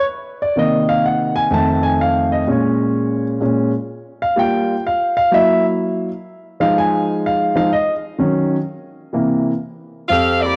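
Jazz with a joyful, brassy mood and a swung feel, this excerpt from a longer piece opens with an intimate grand piano playing alone for the first 10.1 seconds, its natural tone up front with audible action noise and the grain of cassette tape. The piano moves through chords such as Cm7b5, F7#9, Gb7 and C7 in a lightly reverberant home setting. At 10.1 seconds a clear, loose saxophone section steps up front with the melody, also carrying a cassette tape colour, before the recording cuts off at 10.6 seconds.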